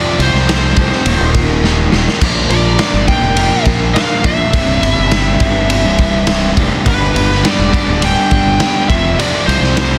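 A straight 4/4 pulse at 104 BPM drives this restless, bittersweet quiet-loud alternative rock excerpt. At 0.2 seconds an up-front raw garage drum kit with a punchy kick and a rolled-off top enters with a round, fuzzed fingered bass, beneath a distorted bluesy lead guitar melody carrying digital delay, very quiet twangy twelve-string arpeggios, a crunchy riff in the background and a faint fuzz guitar riff. The mix sits in light small-room reverb and a dense, heavily limited modern master, with a drum fill at 1.7 seconds over chords moving from F through Eb, Bb, C and G back to F.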